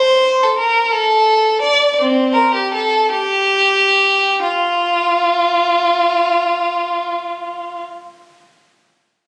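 Flowing and serene, this short cut from a longer baroque-style suite movement for unaccompanied violin moves in 12/8 at 44 to 63 BPM in dotted quarters. The feel is rubato, and the opening passage slows down before a new section begins at 4.4 seconds. In F major, with tuning set at A4 = 439 Hz, the single bowed violin plays from the start until 7.8 seconds, ranging from C4 to D5. Its tone is rich and focused, with a smooth top and vibrato, and it sits up front in the mix. The sound comes from a phone placed in a moderate recital hall, with added club reverb and compression.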